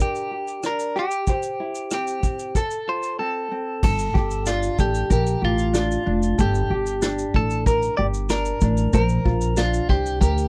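A clean, compressed electric guitar carries the melody up front in this wistful acoustic pop excerpt, its picked lines shimmering through a harmonic tremolo. Beneath it, a tenor ukulele plays light, thumb-plucked accompaniment. A vintage kit played with brushes keeps a straight 4/4 with a punchy kick, medium-tuned snare, rim clicks, shaker and dark crash cymbal, its top end rolled off. At 3.8 seconds the music moves into a new section and a woody pizzicato upright bass enters, sitting close and prominent in the mix. The harmony drifts from Gm through C and F, settles on Gmadd9, then turns to Bbadd9 at 8.9 seconds. The dry, close sound of a 1970s-style studio, with little reverb and a small-room drum tone, gives the reflective mood an intimate, warm feel.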